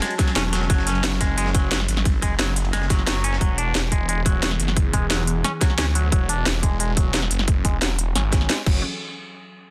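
A snarling, growling detuned saw bass with tube-saturated distortion and sidechain pumping enters at 0.4 s to drive this tense, mechanical dark technical drum and bass at 177 BPM, over a tight, up-front electronic kick, a layered drum and bass kit with a cracking snare, crisp hats and crash, and a gritty, compressed breakbeat sampler-style kit of ride and snare that sits in the background until 3.4 s, while a twangy clean electric guitar picks filter-swept arpeggios steeped in 12-bit sampler grit and dub echo, and a bright, resonant, evolving chorused pad sustains filter-swept chords moving from F#m to E.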